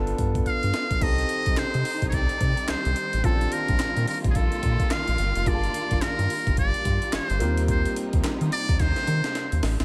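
Bouncy and punchy, this short new jack swing cut from a longer R&B piece rides a swung sixteenth-note groove. A gritty, compressed breakbeat kit sits up front, pitched up and re-recorded in a large room, with a thumpy kick, high-tuned snare, hi-hat, handclaps and crash cymbal, and a fill closing the passage at 8.8 seconds. Underneath, a round analog bass blends sawtooth and sine tones into a deep, detuned, dark sustain, while a polished concert grand adds intimate chords with audible action noise and long sustain. A brilliant, buzzy trumpet with a metal mute takes the jazz-style solo melody from 0.5 seconds, thin and lightly shaded with vibrato. From 1.0 seconds a lush, warm studio string section bows expressive sustained chords with portamento and a smooth top through Cm69, Bbmaj7, Gm7 and Eb6, all set in a small room ambience.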